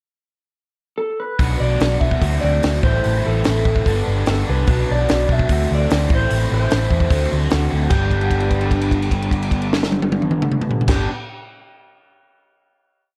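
A slightly broken-up, compressed guitar through a small old amp opens this short, jangly and upbeat indie rock piece at 1.0 s, playing fingered hook phrases with subtle chorus and slapback echo in G major at 148 BPM. From 1.4 s, a biting overdriven guitar with ensemble chorus and slapback echo and a bright, raw garage guitar with phaser ring out chords. Beneath them, a round, hollow-body short-scale bass plays driving eighth notes, and an up-front, dry cocktail kit with a high-tuned snare, tight kick and dark cymbals drives a big rock groove. The pre-chorus moves through Bm, D7 and Am before the band lands on a final G chord at 7.9 s, where a long held note rings out inside a warm studio reverb.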